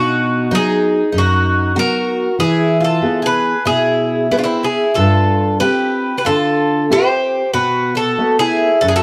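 An Irish bouzouki carries the melody up front, its bright, metallic double strings picked in a mournful, longing fado-style ballad. The piece moves at 94 BPM in 4/4 but with a rubato feel, and this nine-second passage is cut from a longer performance. Beneath it, a picked twelve-string acoustic guitar plays a second line, its boxy archtop tone shimmering with octave-doubled strings. A thumb-plucked nylon-string guitar, also up front, gives the accompaniment a classical character with the fresh sound of new strings. The harmony moves from B to E at 2.4 seconds, then to G7sus4 at 5.0 seconds and B7 at 7.5 seconds. A moderate studio reverb gives the ensemble a modest sense of room.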